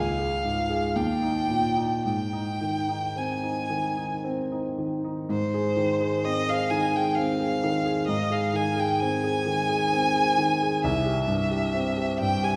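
A rich, focused solo violin sings a tender, bowed melody with vibrato and a smooth top over a warm, vintage-toned grand piano in this romantic classical duo excerpt, moving in a rubato 3/4 at 53-68 BPM in Ab major, with both instruments up front inside the wet reverb of a scoring stage.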